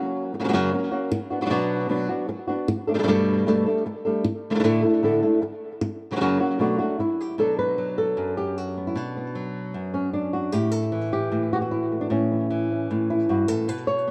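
A lone flamenco guitar opens this short fragment cut from a longer piece, its acoustic, thumb-plucked tone sitting up front with a warm body and a tape echo trailing each phrase. The mood is fiery yet mournful, moving at a brisk, straight four-beat pulse through a minor-key progression that leans on F# and B minor before touching Gadd9 and Asus4 colours. Around 7.4 seconds the music shifts into a second passage that settles on B minor and later moves to A near 10.5 seconds. The guitar ranges from low bass notes up into its upper register, filling the space on its own until the clip ends at 14.1 seconds. A wet studio reverb surrounds it, and the whole recording carries the worn, warbling character of old cassette tape, with a wavering pitch drift.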